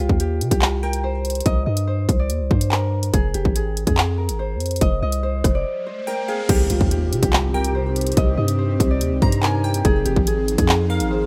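A ringing, fingerpicked Celtic harp melody and a deep, long 808-style bass open this dark, ominous drill excerpt in C minor at 143 BPM in a half-time feel, with an up-front electronic drum kit of hard-clipped kick, bright hi-hats, handclaps, rim clicks and crash cymbal, a glassy, crystalline wavetable pluck with chorus and delay as a second line, a background riser and impact around a break from 5.7 seconds, and an airy, breathy pad with chorus holding sustained chords from 6.5 seconds, all in a rough home demo mix with digital ambience.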